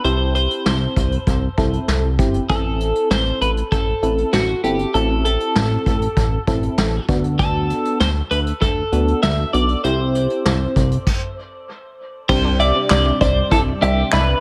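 Melancholic and nocturnal, this synth-pop excerpt sets a clean, compressed twelve-string electric guitar melody, bathed in lush chorus and dub echo, over a warbling FM electric piano with tremolo, a glossy chorused synth bass up front, and a vintage brush drum kit with dark cymbals, handclaps and its own dub echo. After a stop from 11.1 to 12.3 s, a closing passage adds phased, organ-like ensemble strings in the background, very quiet squelchy blip-pluck arpeggios, and, from 12.6 s, a clear baby grand piano second line. Moderate spring reverb washes over the whole echo-heavy mix.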